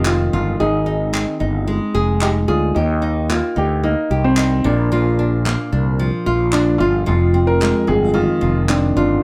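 Up front, a growly, punchy fretless electric bass carries the low end with a lush chorus, giving this short acoustic pop excerpt its amped, direct character. Beside it, a nylon-string guitar plays fingerpicked accompaniment with a deep classical tone and audible finger squeak, sitting forward in the mix throughout. A dark upright piano takes the melody with a mellow, woody, vintage sound, while crisp, band-limited group handclaps keep time from 0.1 seconds to 8.8 seconds. The mood is carefree and easy-going at a straight 111 BPM in 4/4, moving through Fm7, Ab, Eb and Bb before returning to Fm7. Light reverb gives the ensemble a gentle sense of space across the roughly nine-second clip, which is cut from a longer piece.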